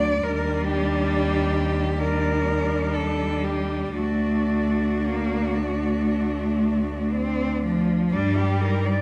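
Rubato and slow in 4/4 at 55-70 BPM, this elegiac, melancholic classical passage for a cello ensemble is cut from a longer piece and moves through Ebmaj7 and D before settling on Gm. A rich, smooth, even cello carries the melody with vibrato, while a second cello adds a second line with soft-attack portamento and a third adds expressive, sliding accompaniment, all three set distant in the hall. Low beneath them, the bass cello sits intimate and up front, its light vibrato and airy sul tasto bowing giving way at 8.9 s, as a wet recital-hall reverb with a 1.5-second tail envelops the ensemble.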